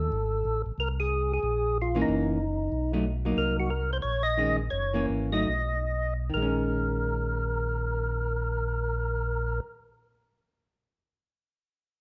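Jazz in Bb minor with a soulful, bluesy mood, swinging in 4/4 at 129-184 BPM and slowing down between 3.4 and 6.4 seconds as it moves into a new section. A fat, lightly overdriven tonewheel organ with third-harmonic percussion and a slow rotary speaker carries the melody, while a second, round and dark tonewheel organ with chorus vibrato and slow rotary plays the bass line, both up front. A clean, picked hollow-body electric jazz guitar joins at 1.9 seconds with accompaniment, and the whole is captured with close, detailed microphones in a moderate large-studio reverb.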